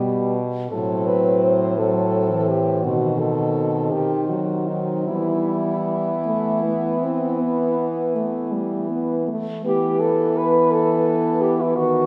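Yearning and elegiac, this classical fragment for horn quartet drifts in rubato 12/8 at 50-58 BPM in E minor: a warm, softly attacked horn with light vibrato carries the melody, a clear, vintage-toned second horn sits in the background, a smooth-topped third horn supplies accompaniment, and a fourth horn holds the bass up front, all four sounding through the 12.1 seconds as the harmony moves from G through B7b9 to Em before settling on E5 at 9.7 seconds, heard from further back in a wet concert hall.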